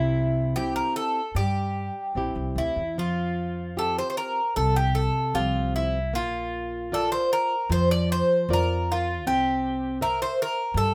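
Mournful and longing, this rubato fado-style ballad in F major, cut from a longer piece and moving at 72-81 BPM in 4/4, puts a bright, metallic Greek bouzouki up front, picking the melody on its double strings over a full-bodied, fingerpicked classical nylon-string guitar and a woody pizzicato upright bass on steel strings, heard in a moderate studio reverb across 10.9 seconds as the chords pass from C through Fsus2 and Bb to C7.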